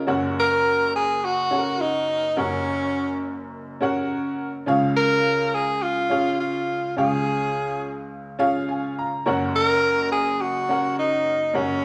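A straight, danceable 4/4 pulse carries this joyful soul fragment, cut from a longer piece, with an up-front upright piano of woody, slightly detuned character laying down the accompaniment from the start. A breathy tenor saxophone enters at 0.4 seconds as the jazz-style solo voice, singing the melody with light vibrato, scooped notes and a smooth top, while the piano slips in a fill between 8.1 and 9.3 seconds. The band plays live together in one room, wrapped in a wet, large studio reverb.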